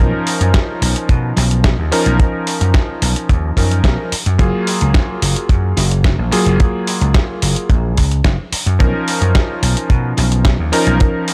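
A dry, gritty recording in a small-room ambience carries this feel-good, groovy nu-disco excerpt, which moves from Bmaj9#11 to F#maj9 and back. Up front, a vintage electric grand piano with clangy lows, chorused unisons and tape echo plays the accompaniment beside a round, punchy, amped slap bass, and a tight, mid-forward acoustic kick enters at 0.5 s. A compressed, dusty sampler-style soul kit supplies hi-hat and a medium-tuned snare, its tape-toned sound re-recorded in a large room.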